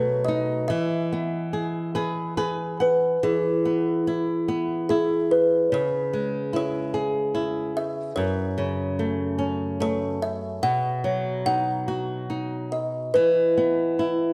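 A children's lullaby in E major at 72 BPM and a gentle, innocent 3/4, this fragment pairs a woody, hollow-toned kalimba melody with bright, up-front fingerpicked flamenco guitar accompaniment, adds a nylon-string guitar fill from 1.5 to 3.2 seconds, and settles into a dark production with recital hall reverb over chords that move from B7 through C#m and F#m to close on E5.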